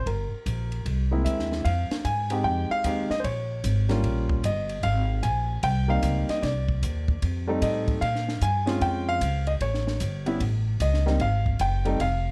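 A warm concert grand piano carries the melody up front, its intimate, natural tone revealing audible action noise and a deep low end as it moves between G3 and Ab5. This playful jazz piano trio excerpt swings at 151 BPM in 4/4, with a slightly flat tuning of A4 = 437 Hz. A pizzicato upright bass sits close beside it, woody and dark with steel strings, covering the low register from F1 to Bb2. Quieter underneath, a compact cocktail drum kit adds hi-hat, kick, ride cymbal and snare from 0.1 s to 12.1 s, its smooth, rolled-off sound marked by a high-tuned snare and a tight kick in a small room. The harmony opens on Gm and C7alt before a longer passage from 1.7 s moves through Fm7, Bbm7, Eb7 and Abmaj7, closing on an open Abmaj7 chord. Close, detailed microphones and little reverb keep the whole trio dry and intimate.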